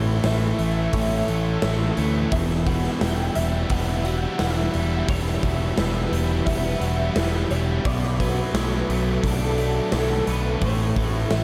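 The overdriven electric bass growls up front in this short cut from a longer shoegaze and dream pop rock piece, moving at 87 BPM in a straight 4/4 with a dreamy, hazy mood. Around it, a biting overdriven guitar with reverse reverb and a thick fuzz guitar, distorted and bathed in lush chorus, grind out riffs, the fuzz part sitting further back. A bright, twangy twelve-string electric guitar carries the melody in the background through ensemble chorus and tape echo, while a very quiet fingerpicked twelve-string acoustic adds boxy, shimmering, octave-doubled arpeggios. A silky string machine holds soft, evolving chords beneath it all, and a gated 80s kit enters at 0.2 seconds with a punchy kick, medium-tuned snare and hi-hat in a bright stone room. The chords move from A through Emadd9 to Bm7 before returning to A at 10.6 seconds, and the whole mix is soaked in a huge ambient reverb with a four-second tail.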